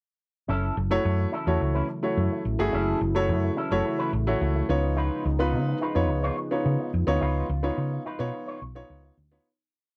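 Danceable and slick, this short funk piece moves at 107 BPM in a straight 4/4 feel, set in F# dorian and shifting from F#m7 to C#9 at 4.7 seconds. Up front, a dark, round hollow-body short-scale bass plays a fat, syncopated boogie line with slides and chromatic approach notes, and it sits loudest in the mix. Beside it, a baby grand piano with a natural tone and short sustain enters at 0.9 seconds with syncopated chord stabs in drop-2 voicings. A bright, clean, twangy electric guitar runs through an envelope filter and analog chorus, playing a choppy, compressed sixteenth-note riff. Beneath them, a mellow, detuned sawtooth pad with a soft attack holds smooth sustained chords in the background, colored by chorus and phaser. The dry, close 1970s-style studio sound carries little reverb, and the whole piece fades out from 7.2 seconds to its close at 9.5.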